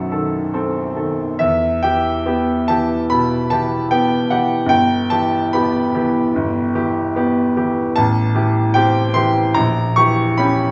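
Rubato phrasing in a slow 4/4, drifting between 68 and 78 BPM, gives this brief romantic character piece for solo piano a bittersweet, brooding feel in E minor. The bright, vintage-toned grand piano sits up front with long sustain, spanning G1 to C#6 and moving from B7b9 through Em, Em/G and Am7 to an A#dim7 at 9.6 seconds. A wet recital hall reverb, mixed with a small room ambience, surrounds the instrument until the fragment is cut off at 10.7 seconds.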